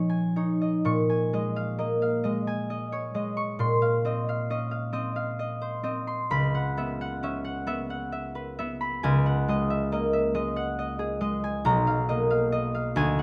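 A solo concert harp opens this short classical excerpt, its mellow, ringing, fingerpicked tone placed up front in a close, detailed recording with light reverb as it drifts in a gentle, wistful rubato 6/8 through lush harmonies from Bbm11 to Dbm11 and Emaj9/Db, settling on Bmaj7#11 at 11.7 seconds.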